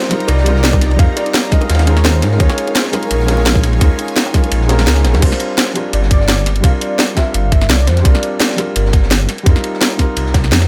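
Liquid drum and bass at 170 BPM, this warm, uplifting passage cut from a longer piece moves over sus-flavoured ninth chords with a gentle 16th-note swing. A velvety, detuned sawtooth lead with chorus, vibrato and digital delay carries the melody until 9.1 s, while a soft, felt-muted upright piano supplies intimate accompaniment throughout. For the first 5.2 s, a shimmering, ethereal pad with octave-up sparkle holds sustained chords very quietly beside ringing bongos and congas played with soft hands. The rhythm stacks a tight, up-front electronic kick and a garage kit with a cracking snare over a dark, saturated breakbeat kit sitting in the background with rolled-off, high-passed cymbals and snare. Underneath, a menacing detuned saw bass with an evolving filter swell dominates the low end, and the whole mix sits in a generous studio reverb.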